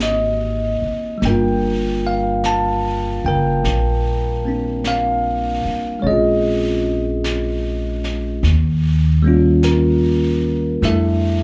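Heard through a club's PA with a moderate room reverb, this live excerpt is an intimate, romantic jazz ballad at a slow 50 BPM in 4/4 with a gentle swing, tuned to A4 = 444 Hz. A bell-like, bright tine electric piano sits up front with a lush chorus, voicing chords from Ab9 and Gm7 through Bbm7 and Eb9 to Fmaj13. Underneath, a woody, thumpy pizzicato upright bass stays close to the listener, while an airy brush kit with a high-tuned snare and hi-hat plays softly in the background.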